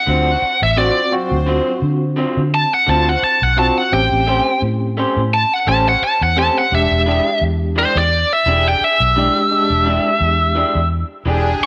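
A moderate echo-chamber reverb gives this laid-back, swaggering blues at 86 BPM a digital sense of space, with a swung 4/4 feel moving through D7#9, A7#9 and E7#9. A biting, overdriven lead guitar sits up front and solos across the whole cut from 0.0 s, backed by stabs from a slightly broken-up, lo-fi electric guitar through a small old amp and a round, foam-muted fingered bass. A worn, slightly out-of-tune tine electric piano with medium tremolo joins at 0.8 s, while a lush, bowed symphonic string section holds dark chords in the background.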